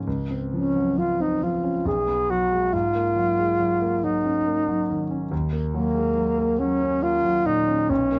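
In a three-beat metre played with free, breathing rubato, this short fragment of a longer classical piece unfolds as an impressionist duo for alto saxophone and grand piano, pastoral and luminous in mood. The warm concert grand opens at 0.0 seconds with accompaniment that reaches into a deep bass, its intimate, natural tone carrying the audible clicks and thumps of its action. At 0.5 seconds the alto saxophone enters as the solo voice, singing a mellow, classically styled melody coloured by gentle vibrato, and it sits a little more prominently than the piano. The harmony drifts through Dbmaj7, Cb5, Ab9sus4 and Ebm7, giving the passage a soft, glowing ambiguity. Both instruments are placed up front and captured by close, detailed microphones in a dry setting, with the ensemble tuned slightly low at A4 = 435 Hz.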